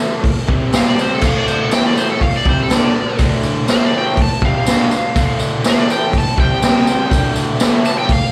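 Garage rock at 122 BPM in D minor, raw and gritty, cut from a longer piece heard live through a club PA with a moderate lush hall reverb, where a double-tracked, overdriven electric guitar riff with slapback echo runs from the start alongside a jingly tambourine in the background, a saturated, punchy, up-front drum kit with crash, hi-hat, kick and snare joins at 0.2 seconds, and a bright overdriven slide guitar played with fingerpicks takes the solo melody from 0.8 seconds over chords moving through D5, C5, A5 and Dm.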